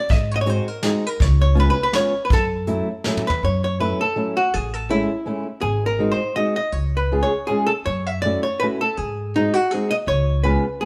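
A musette waltz in 3/4 with a swung, rubato feel, this excerpt from a longer piece sounds nostalgic and whirling. A clean, hollow-body electric archtop guitar, picked and miked through an amplifier, carries the melody throughout. From 0.5 seconds, an old ladder-braced acoustic guitar with a dark, boxy tone and aged strings fingerpicks the accompaniment. A pizzicato upright bass on steel strings lays down a growly, woody foundation. A soft brush kit with a small-room sound, punchy kick, medium-tuned snare, hi-hat and toms plays only briefly, closing with a drum fill that ends at 3.4 seconds, after which the guitars and bass carry on. The band plays live together in one room, each instrument up front, surrounded by a moderate large studio reverb.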